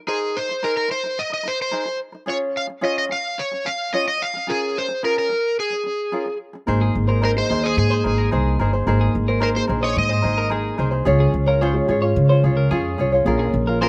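A fingerpicked tenor ukulele with slapback echo and an up-front, overdriven slide guitar carrying the melody open this easy-going, sunny pop excerpt at 109 BPM in Ab major; at 6.7 seconds a woody, pizzicato upright bass and a mellow, felt-muted upright piano enter, with a quiet, clean twelve-string electric guitar adding arpeggios just after, over Abadd9, Db and Bbm7 chords in a dry outdoor sound, while the slide falls silent at 10.5 seconds and returns briefly at 13.8.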